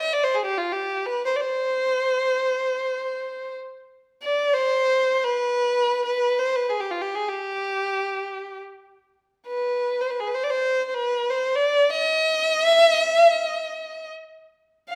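A lone bowed violin, up front and boxy in tone, plays in free time through this festive, warm Arabic maqam excerpt in C maqam suznak, tuned to A4 = 439 Hz, its expressive line shaped by vibrato and portamento across the full 15.0 seconds and set in a moderate recital-hall reverb.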